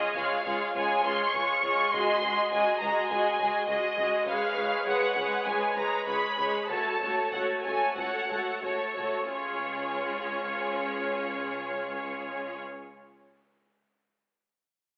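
Classical string music, stormy and restless, heard here as a short cut from a longer piece in 4/4 with a free, rubato feel that slows down from 3.1 to 9.3 seconds. A symphonic violin section carries the melody up front with a clear, intense tone and vibrato, while a second violin section adds a smooth, even second line beneath it. The viola section fills in the accompaniment with a focused, rich sound, and the cello and double bass sections hold a low Db in the background, the basses entering at 0.2 seconds. The harmony settles back onto Db at 9.3 seconds as the music moves into a new section. The whole ensemble sits in a reverberant recital hall but comes through a narrow telephone-like sound, giving the lush bowed upper strings a distant, boxed-in quality.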